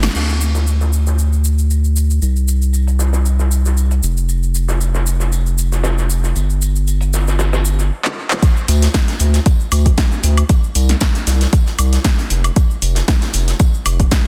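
Hypnotic and moody, this deep house excerpt moves at 116 BPM in D minor with a light swing, built on a round, dark analog bass sitting up front with sidechain pumping, while an overdriven electronic kit of punchy snare, metallic hats, handclaps, shaker, woodblock and crash is joined by a fainter, filtered acoustic arena kit with a fat snare and tambourine. After a drum fill and a brief stop just before 8.4 seconds, the drop arrives as a deep, overdriven kick enters up front. The mix is dry, dense and heavily limited.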